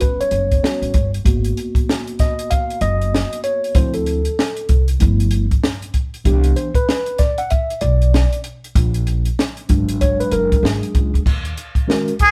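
Jazz-hop with a nocturnal, cool mood at 96 BPM and a swung sixteenth feel, in which a mellow, clean tine electric piano solos over extended jazz chords, backed by a woody, thumpy pizzicato upright bass on gut strings and a dry compact cocktail kit with dark cymbals, a high-tuned snare and a punchy kick, played together in one room with light reverb, until a bright, nasal straight-muted trumpet enters at 12.2 s with vibrato and scooped notes just as the recording is cut.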